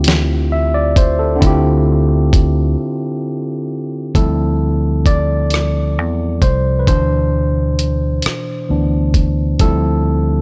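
Dry and close, this yearning, sultry slice of slow six-eight R&B pairs a compressed, dusty soul sampler-style drum kit, with its thumpy kick and fat snare, with a dark, round fingered electric bass, while a bright, barky overdriven tine electric piano heard through a combo amp accompanies over Dm11, carries on through a break at 2.8 seconds, then takes a gritty solo from 4.1 seconds, with the drums stopping at 9.8 seconds.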